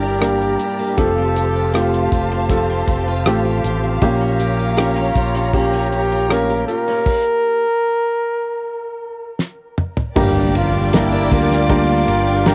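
Emotional and hopeful, this pop ballad excerpt sets a punchy, lightly vibratoed flugelhorn with scooped notes over a soft felt-muted upright piano, distant bowed strings with portamento, a full-bodied picked steel-string acoustic guitar with finger squeak and tape echo, a round fretless bass, and a dry, dark-cymballed 70s drum kit with a fat snare, all with a cassette-tape home-recording character and light reverb; after a stop at 7.1 s and a drum fill, a lush violin section and a background electronic impact arrive at 10.2 s.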